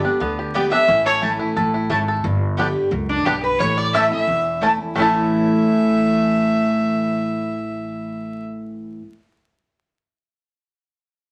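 A twangy, percussive banjo carrying the melody and a bright, full-bodied dreadnought guitar picking the accompaniment open this joyful, driving bluegrass fragment at 177 BPM in A major. The upright bass's woody, thumpy pizzicato on gut strings arrives at 0.2 seconds, and a picked, double-strung mandolin soon adds short stabs. At 0.7 seconds a clear fiddle with light vibrato joins the melody, bowed by one player and placed up front, yet with an earthy, distant character. Alongside it, a lap resonator guitar played with slide and fingerpicks traces a metallic, nasal second line from the background. The harmony moves between G and A across three brief sections in straight 4/4, and the fiddle drops out shortly before the end. Moderate studio reverb gives a modest sense of room, and a layer of vinyl crackle sits over the recording.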